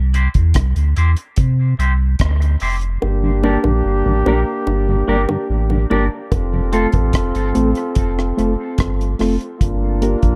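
Dark, lightly reverberant small-room production frames this deep, meditative dub reggae excerpt, where a round sine sub bass and a dry, tight-kicked drum kit of hi-hat, kick and rim click sit up front beneath a mellow background tonewheel organ with slow rotary speaker and a twangy, clean electric guitar, both soaked in dub echo; from 3.0 s a bright trombone section with light vibrato and very quiet, high-tuned bongos join, soon followed by reedy electric piano stabs.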